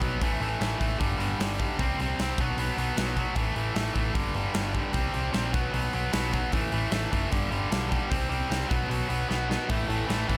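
Lightly reverberant and polished, this upbeat, energetic punk rock excerpt at 152 BPM drives a bright, tight distorted guitar riff up front over a dark, round hollow-body short-scale picked bass and a big, airy rock drum kit with a punchy kick, cycling through A5, G5, C5 and B5 until a drum fill at 9.3 s leads to an overdriven second guitar entering in the background at 9.7 s.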